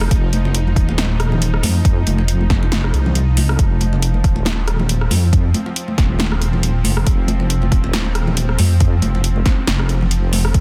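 A wobbling, deep sawtooth bass sits up front through this short cut of meditative, brooding deep dubstep, its detuned, chorus-thickened tone dark and compressed with a fast attack. An overdriven electronic kick sits equally forward, joined by a layered deep house kit of punchy snare, rim click and metallic hats that carry the same grit and the sound of a large room. The half-time feel carries a light swing on the sixteenths. High-tuned acoustic congas with a thin, vintage, band-limited skin sound in the background, trailed by dub echo, from 0.3 seconds to 10.4 seconds. Beneath it all, a tense, string-like drone holds sustained chords with a slow attack, vibrato, ring modulation and its own reverb, over an F chord. The mix is dense and heavily limited, set in a digital ambience.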